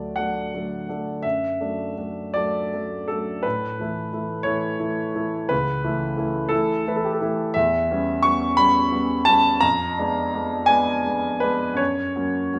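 Classical romantic nocturne for solo grand piano in a mournful, melancholic mood, moving at 51-62 BPM in dotted quarters in 6/8 with free rubato, its warm, present, up-front tone carrying long sustain from C#2 to C#6 in a moderate recital hall reverb as the harmony drifts from D through A and darkens toward Fdim7 before landing on F# at 11.8 seconds in this 12.6-second fragment of a longer piece.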